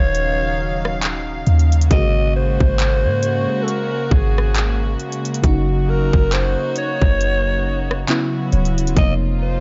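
Darkly produced in a digital ambience, this late-night, sensual contemporary R&B excerpt sets a breathy, raspy alto saxophone melody with delay over a lush, dreamy FM electric piano with a soft pad layer treated with chorus and phaser, floating sul tasto studio strings with sidechain pumping, a deep, boomy 808-style bass and a trap drum kit up front with a hard-clipped kick, crisp hats, handclaps and rim clicks, while a very quiet synth bell adds gentle texture from 3.7 seconds.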